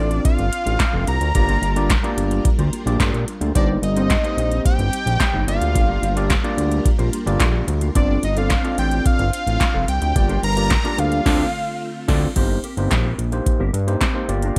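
A straight, danceable groove in four from an electro analog drum machine drives this slick early-eighties boogie funk, its deep kick, punchy snare, handclaps, metallic hi-hats and crash cymbal sitting up front with a tape-tinged character and a short room on the snare, clap and hats. Beneath it, a fat, detuned sawtooth bass with a saturated, fast-attack tone sits equally forward. A bright, gritty overdriven tine electric piano played through a combo amp fills in the accompaniment, while a dark, clean, fingered electric guitar riff with ensemble chorus sits in the background. Very quiet, shimmering vintage string-machine violins hold sustained chords. On top, a mellow analog lead blending sawtooth, square wave and sub octave, with a filter pluck, vibrato, phaser and analog delay, carries the melody until 12.1 seconds, as a full-band accent from 11.3 seconds leads into a new section at 12.4 seconds in this dry-sounding excerpt.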